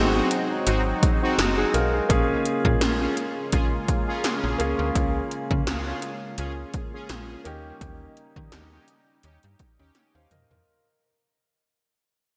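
A clear concert grand piano, a sweeping resonant pad, analog synth brass and a slap-like FM bass open together in this nostalgic, romantic slice of 1980s-style pop, with electronic pad drums joining at 0.3 seconds over a gently swung sixteenth-note feel. Up front, the piano sounds intimate and polished, its long sustain, deep bass and audible action noise carrying the accompaniment while the snappy, metallic-edged bass supplies the low end. Behind them, the pad holds evolving, detuned sustained chords with a slow attack, a filter swell and chorus, and the fat, sawtooth brass stabs sit in the background, brightened by chorus and a digital delay. The drums are punchy and tape-tinged, with a gated snare and toms, metallic hi-hats and a firm kick, and a drum fill arrives at 10.0 seconds. A lush hall reverb and glossy digital production frame the whole arrangement as it fades out across its entire length, cut from a longer piece.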